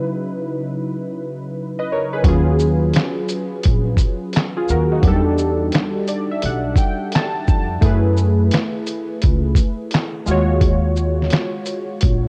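Round, detuned sawtooth keys open this melancholic, nostalgic lo-fi hip hop fragment alone, sitting up front with a fast attack, decaying tails, chorus, a filter sweep and a low-pass filter that softens their edge. At 2.2 seconds the sampler-style drum kit and pizzicato upright bass arrive together at an unhurried 86 BPM in 4/4 with a lazy sixteenth-note swing. The drums are compressed, pitched down and muffled, built on a thumpy kick, a medium-tuned snare, hi-hat, shaker and handclaps, with a tape-tinged character that keeps them forward in the mix. The bass is woody and dark, its steel strings giving a thumpy acoustic weight beneath minor-eleventh harmony that moves from Dbm11 through Ebm11, Em7 and Gbm11. The keys add a short fill from 5.7 seconds, while a worn cassette ambience with warbly pitch drift wraps the whole fragment in an aged, wistful haze.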